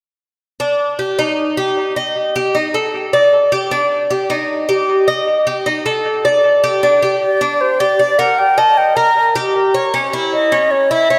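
Nostalgic yet danceable, this short Latin piece, cut from a longer work, opens at 0.6 seconds with a Cuban tres picking bright, metallic arpeggios on its doubled strings, some of them octave-doubled, set up front with an analog delay. At 7.2 seconds a mellow concert flute joins with an airy, softly attacked melody touched with vibrato, also up front and carrying analog delay, as the harmony moves from G minor through E-flat toward a rootless A chord. A lush hall reverb soaks the whole mix, giving it a dreamy, spacious glow.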